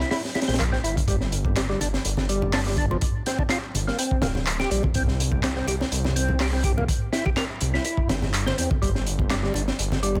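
A crunchy, saturated breakbeat drum kit with a punchy kick and high-tuned snare sits up front in this funky, gritty 124 BPM breakbeat excerpt, joined by a thick, menacing detuned saw bass, a fat tonewheel organ riff with key click, chorus vibrato, slow rotary speaker, overdrive, 12-bit sampler grit and dub echo, dry analog handclaps from 0.6 seconds, and very quiet, bright congas from 1.5 seconds, all over a small room ambience as the harmony moves from C7 to G5 to C.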